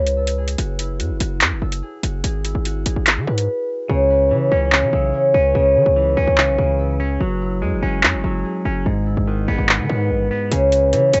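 This home cassette recording has a dulled, capped top end and a light reverb, giving the cut-down clip a murky, lo-fi haze. It is an ominous, tense drill track at 145 BPM in 4/4 with a half-time feel, set in C# minor and tuned slightly flat. A fingerpicked acoustic concert harp carries the ringing melody between E4 and E5, bathed in plate reverb and tape echo, while a hard-hitting 808-style bass sits up front with a punchy, heavy sine tone, a noise layer, a fast attack and a decaying tail. The electronic drill kit, also up front and run through cassette tape, brings handclaps and metallic hi-hats, then breaks at 3.5 seconds. When it returns at 3.9 seconds, the hats drop away until 10.5 seconds, and a bright, clean, compressed semi-hollow electric guitar enters with picked accompaniment and its own plate reverb. Underneath, the harmony moves through F#7sus2, G#m and C#m.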